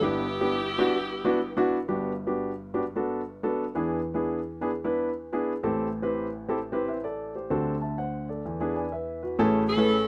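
Gospel in a swung 4/4, this short fragment of a longer piece feels uplifting and jubilant, with the tuning set a touch low at A4 = 437 Hz. A tight saxophone section carries the melody, sounding warm and present with jazz-style vibrato, but it plays only from 0.0 to 1.7 seconds and returns briefly at 9.7 seconds. The grand piano accompanies the whole way through, intimate and natural, placed up front, with the action noise of its keys audible. Once the saxophones drop out, the piano holds the stage alone, moving through major-seventh and dominant-seventh colours before landing on an Amaj7 chord at 9.4 seconds. A light reverb gives the close, warm sound a little air.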